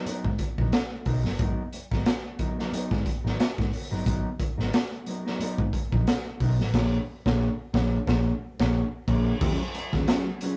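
A funk groove at 90 BPM in 4/4, its sixteenths leaning into a light swing, with a driving yet hypnotic mood in this short cut from a longer piece. A raw garage drum kit sits up front, its high-tuned snare, boomy kick, hi-hat and crash cymbal saturated and gritty, with a rolled-off top and a pumping small-room character. A vintage muted picked electric bass gives a dark, round, foam-muted low end through its amp, while a mellow electric guitar adds clean, fingered accompaniment with a dusky tone. The harmony moves from Abm9 to Bb7#9 at 6.7 seconds, where the band hits a run of accents, before settling on Ebm11 at 9.4 seconds as a new section begins. The whole take has the rough feel of a rehearsal-room recording, with moderate reverb around it.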